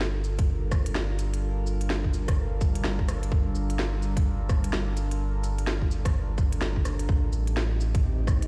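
A warbling, nostalgic pad with chorus, phaser and sidechain pumping holds sustained chords over a deep, round dub sub bass and a drum kit of woody snare, crisp hats, cabasa and rim click, joined at 0.4 s by a tight, up-front electronic kick, in this nocturnal, wistful future garage excerpt with swung sixteenths and stone room reverb, where an airy, wind-like tuned noise texture enters in the background at 7.4 s, shortly after the harmony moves from Gm9 to Am7b5.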